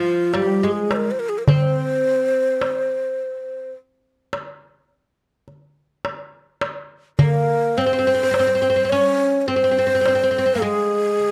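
Set in a 10/8 metre at 105 beats per minute counted in eighths, this short passage from a longer Arabic maqam piece moves with a straight, hypnotic pulse and a melancholic cast. The darbuka enters at 0.3 seconds, its clay shell and natural skin played with soft hands for a warm sound heard up front in a live room. Carrying the melody from the very start, the end-blown reed-cane ney sounds breathy and hollow, with a straight tone, gentle attack and lifted highs that place it close to the listener. Beneath it, the fretless oud plays a second line an octave lower, its plectrum-plucked double strings giving a deep, woody resonance. The recording is dry and close in a 1970s studio manner, with little reverb, keeping all three instruments intimate and present through to 11.3 seconds.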